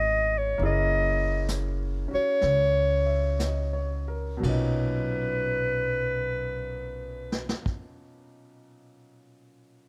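A lilting swing in 4/4 moves at a slow 56-70 BPM and eases down over the opening seconds, with a vintage brush kit of dark cymbals, tight kick and medium-tuned snare entering at 0.6 seconds beside a woody, thumpy pizzicato upright bass on gut strings. Over it, in this romantic, late-night jazz ballad fragment in B major, an up-front clarinet sings the melody with light vibrato and scooped notes, while a brilliant grand piano accompanies through C#m9 and F#7 before settling on Bmaj9. In the dry, close sound, the piano rings on alone until 9.9 seconds.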